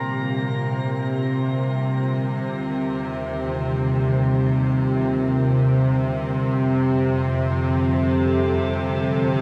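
A cassette-tape haze and a drenched shimmer reverb surround this reflective, spacious ambient passage in free time, cut from a longer piece. Up front, a bright, tense bowed-like drone with vibrato holds a single pitch. Behind it, a glassy, ethereal FM pad with ensemble chorus and a dark, woody cello section playing sul tasto both fade in over the full 9.4 seconds as the harmony moves from Bb6 to Ebmaj7 at 2.6 seconds and F at 6.6 seconds.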